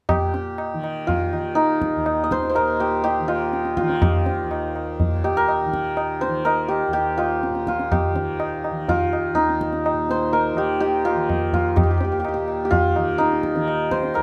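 Radiant and devotional, this Hindustani classical passage in raga bhupali on Eb moves at 124 BPM in a straight 4/4 and gathers speed from start to finish. An up-front, hammered santur carries the melody between Eb4 and Eb5 with a shimmering, ringing tone. A softly plucked, buzzing tanpura drone sits low and quiet beneath, and a low-tuned tabla sounds close and dry, all three playing throughout this short section of a longer piece, set in a small room with a dark, warm production.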